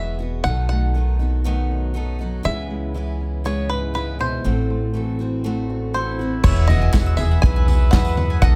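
This excerpt of nostalgic indie folk opens with a twangy bluegrass banjo carrying the melody through an analog delay, set over a fingerpicked steel-string acoustic guitar, a bright, full-bodied picked dreadnought guitar and a woody, thumpy upright bass played pizzicato up front. The chords move from B7 to C#m7 and then Am6 in a steady, straight 4/4 within a small room ambience. At 5.9 seconds a distant, roomy trumpet adds a second line in a classical style. The arrangement builds at 6.4 seconds as the harmony lands on Eadd9 and several parts enter together: an intimate concert grand piano with audible action noise in the background, a reedy, breathing pedal harmonium holding very quiet sustained chords, and a mandolin playing arpeggios with doubled strings. An unplugged drum kit joins at the same moment, played with bundle sticks, with dark cymbals, a punchy kick, toms and a medium-tuned snare. 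A jingly tambourine from a larger, distant space and hollow group handclaps add light percussion in the background.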